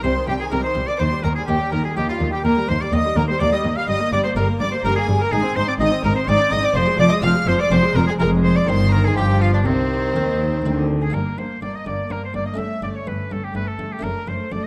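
In a straight 3/4 at 124 BPM, this dramatic, stormy baroque-style concerto movement in C minor, turning to G minor at 11.1 s, sets a bright, present oboe melody against a high line from gut-strung chamber violins, a second violin line, warm violas, a muted, lute-like buff-stop harpsichord in the background, and a dark cello and rich double bass section on the bass, all heard closely in a moderate scoring-stage reverb.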